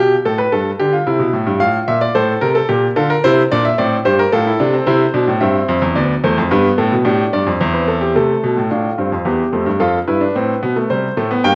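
A clear baby grand piano carries this baroque-style three-part fugue alone, sitting up front with an intimate, natural tone, long sustain and the noise of its action audible beneath the notes. The mood is stately and joyful, moving in a straight three-beat metre as its voices range from D2 up to G5. Harmonies pass through a G7 and C on to F/A, and a new section begins at 8.2 seconds before settling on a bare C5 chord at 10.9 seconds. A moderate recital-hall reverb surrounds the piano. The sound comes through worn, warbling old cassette tape whose drifting pitch colours the performance. The recording is a short cut from a longer piece, ending at 11.6 seconds.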